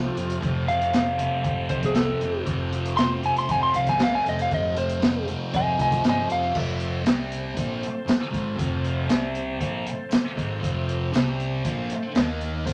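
An up-front electric slide guitar, played with fingerpicks, compressed and carrying a slightly broken-up edge, takes the melody in a solo that runs from the start until 6.6 seconds, after which it stops. This excerpt of kaleidoscopic, trippy psychedelic rock in a straight 4/4 is driven beneath that solo by a thick, double-tracked fuzz guitar riff, picked and up front, with distortion and phaser on it. An overdriven tonewheel organ holds full, gritty sustained chords through a slow rotary speaker and chorus vibrato. A round, amped fingered electric bass sits low and dark, while a crunchy breakbeat drum kit enters at 0.2 seconds with a tight kick, a medium-tuned snare, hi-hat and dark crash cymbals, all from a small room with a rolled-off top. A very quiet, jingly tambourine adds a close, bright shimmer, and a moderate studio reverb surrounds the mix as the second half circles between F and C5 chords before landing on Eb5.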